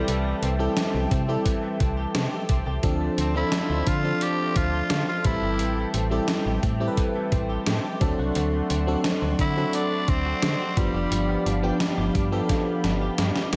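A straight 4/4 groove from a clean 12-bit digital drum machine, with a thumpy kick, medium-tuned snare and hi-hat sitting up front from 0.1 seconds, drives this dramatic, urgent 1980s-style pop passage cut from a longer piece. Beneath it, a snappy FM slap bass with a metallic attack anchors the low end. A glassy, bell-like FM electric piano with chorus and slapback echo carries the accompaniment over Am7, Dm7, Am7, D7 and G7 chords. In the background, a brassy, airy analog pad of detuned sawtooth tone, with a filter swell, moving notch and vibrato, holds sustained chords, while a compressed, picked electric guitar recorded direct repeats a riff dressed in ensemble chorus and slapback echo. The raspy, gritty tenor saxophone takes the solo melody with punchy vibrato, delay and slapback echo until 11.5 seconds, a drum fill arrives at 12.5 seconds, and concert hall reverb gives the whole mix a big arena sound.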